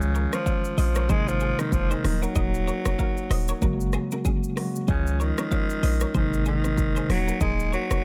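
A breezy, joyful afrobeats excerpt in Db major at 95 BPM with a swung 16th-note feel opens on a breathy, raspy tenor saxophone melody with delay, a mellow tine electric piano that sounds played through built-in speakers, a deep, boomy 808-style bass, and a produced afro-pop drum kit with a deep kick, crisp hats, rim click and shaker, before a clean, picked electric guitar riff enters in the background at 0.1 seconds and very quiet, close, soft-handed bongos and congas join at 0.3 seconds over a Dbadd9, Abadd9, Ebm and Gbadd9 progression in a dry mix carrying a faint mains hum.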